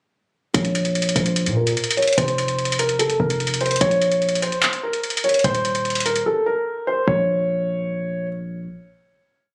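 A bouncy half-time trap beat at 147 BPM in 4/4 drives this short, dark and melancholic hip hop piece in Bb harmonic minor, with the booming analog drum machine laying down dry handclaps and metallic sixteenth-note hi-hats with fast rolls from 0.5 seconds. Alongside, a hard-hitting 808-style bass delivers punchy, heavy sine tones with a noise layer, fast attack and long decaying sub-bass notes that slide in pitch. Up front, a dark baby grand piano plays a mellow, vintage looping melody, repeated like a sampled loop, with long sustain, a low-pass filter sweep and digital delay. The chords move from Bbmadd9 to F5, back to Bbmadd9 and on to Eb5 through the breakdown, and the drums drop out at 6.3 seconds. From 7.1 seconds a final Bbm chord rings out with the piano and 808, captured as if on a phone in the room with club reverb and compression.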